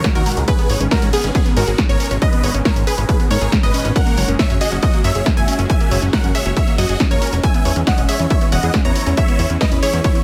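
Bittersweet and driving, this uplifting trance passage is cut from a longer piece and runs in a straight 4/4 pulse. A huge, euphoric supersaw lead carries the melody with phaser, delay and sidechain pumping, its detuned unison sawtooth tone bright and compressed. Beneath it, a lush unison pluck spins arpeggios through dub echo, while a round, full-bodied analog pluck sits in the background with a second line coloured by chorus. A supersaw pad holds sustained chords behind them, with a slow attack and a phaser sheen, as the harmony moves from G#madd9 at 0.5 seconds to F#add9 and then C#madd9/E. An overdriven electronic kick sits heavy and up front, joined by a techno kit with a punchy snare and pumping hi-hats, and a fat, thick sawtooth bass with filter sweeps enters at 0.2 seconds. The mix is dry and loud, with little reverb.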